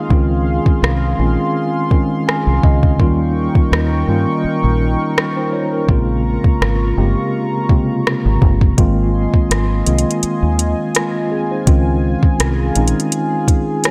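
A mellow, clean tine electric piano and a dark, slow-blooming analog pad with chorus and sidechain pumping open this dreamy contemporary R&B piece, joined almost at once by a round, punchy fingered dub bass and a produced electronic kit of soft kick, metallic hi-hats and rim clicks. The electric piano slips in a short fill from 1.9 to 3.0 seconds over smooth, lightly swung chords moving through major-seventh, dominant-seventh and minor-seventh colours. The bass drops out at 12.9 seconds while the other parts carry on under light digital reverb.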